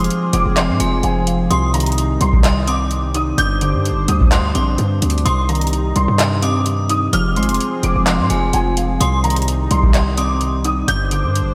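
Steeped in a lush hall reverb, this dreamy, dark hip hop and trap excerpt rides a brooding half-time groove from a booming analog drum machine, with its deep kick, metallic hats and handclaps, alongside a punchy, heavy 808-style bass pushed up front. A felt-muted upright piano carries a soft, intimate melody high in its range, joined by an inharmonic, ringing FM bell as a second line, drenched in phaser and diffuse ambient delay. Beneath them, warbling, detuned lo-fi synth keys and a smooth, mellow analog pad hold the harmony as the chords circle through Fm, Cm and Gsus4.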